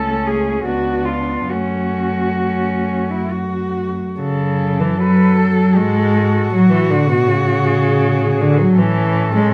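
This classical, lyrical passage for a cello ensemble, cut from a longer piece, moves in a rubato 3/4 at roughly 65-82 BPM in F# minor, with an elegiac, melancholic mood. Four muted cellos, each a single bowed player con sordino, play throughout, and all share a dark, veiled tone. The melody sits high and distant, with light vibrato, soft attacks and portamento. A close second line beneath it carries vibrato and the same gliding portamento. Up front is the accompaniment, the most prominent voice, with light vibrato, while the bass has vibrato and a smooth top. The harmony passes from Amaj7/C# through C#7b9 to F#m, and the opening phrase returns at 4.2 s before settling through F#m/A onto A at 8.8 s, all within a moderate large-studio reverb.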